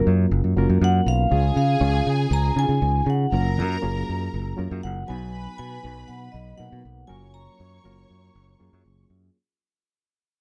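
A ringing, smooth vibraphone melody and a reedy electric piano shimmering with fast tremolo open this glamorous, driving disco fragment, joined at 0.1 seconds by a growly, punchy fingered bass up front and at 1.3 seconds by a lush, bowed string section carrying a second line with vibrato further back, all under light reverb in a dark production that fades out across its 9.4 seconds over chords moving between Gbmaj7, Db and Bmaj7.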